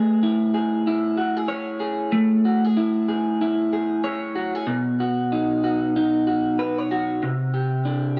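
A lone electric guitar through a small old amp carries this short indie pop excerpt, its warm, slightly broken-up tone picked and compressed, sitting up front with a subtle chorus and vibrato shimmer. At a laid-back 95 BPM in 4/4 with a gentle 16th-note swing, the part moves through Amaj7, Badd9 and Csus2 in A lydian, spanning B2 to C#5 for a nostalgic feel. A moderate echo chamber reverb with a 2.1-second tail gives the guitar a roomy, wistful glow across its 8.2 seconds.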